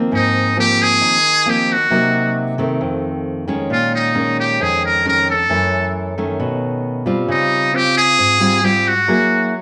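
A straight 4/4 bossa nova feel moves along at 134 BPM in Ab major, and the sunny, breezy mood comes through in this short excerpt cut from a longer piece. A fingerpicked nylon-string guitar carries the accompaniment from the start, its acoustic, classical tone sitting up front with audible finger squeak. Entering at 0.1 seconds, a trumpet with a metal mute takes the solo melody in a jazz style, sounding brilliant, buzzy and thin with a light vibrato, placed up front yet carrying a distant, roomy quality. The harmony travels from Ab6/9 through Cm7b5, F7 and Bbm7, then shifts to Gbm7, B9 and Dbmaj9#11 before landing on Gb9. The whole passage unfolds as a single section in a small room, with a moderate echo chamber reverb around it.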